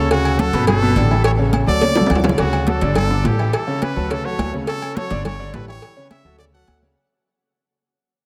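A dreamy, reverb-soaked mix frames this joyful, danceable salsa excerpt in D major at 210 BPM, where a bright, punchy trumpet with analog delay carries the solo melody over a polished grand piano with analog chorus and an up-front, woody pizzicato upright bass, while thin-skinned congas, round low-tuned cowbell and bongos, and ringing metal-shell agogo bells and timbales drive the rhythm, with a drum fill from 1.8 to 2.4 seconds before the whole excerpt fades out from 2.4 seconds over chords moving through Dmaj7, Gadd9, Gsus2 and A7.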